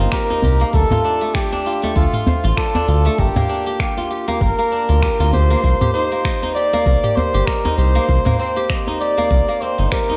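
A dreamy mix soaked in plate reverb frames this hypnotic organic downtempo excerpt in C dorian at 98 BPM, with a lightly swung 16th-note feel moving through Cm7, Dm7, Gm7 and back to Cm7. Up front, a veiled, bucket-muted trumpet carries a forceful jazz-style solo melody with vibrato and delay, while a fingerpicked kora spins ringing arpeggios through its own delay and a round, dark analog bass with tube saturation sits underneath. The drums pair an overdriven soft electronic kick with a produced kit of finger snaps, crisp hats, shaker and toms, joined from 0.3 seconds by a deep, close and dry djembe.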